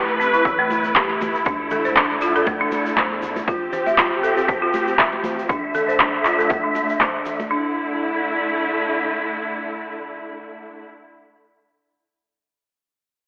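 A faint impact opens this driving, earthy afro house fragment at 119 BPM in D dorian, where dark, lush symphonic strings hold vibrato-rich sustained chords up front and a woody, gritty marimba spins tape-echoed arpeggios under a filter sweep, while a round, deep analog bass, an overdriven punchy kick, up-front overdriven handclaps, high-tuned dry congas and a grainy egg shaker fill a dreamy, reverb-soaked mix with a telephone tint, the strings carrying on alone after 7.7 s until 10.8 s.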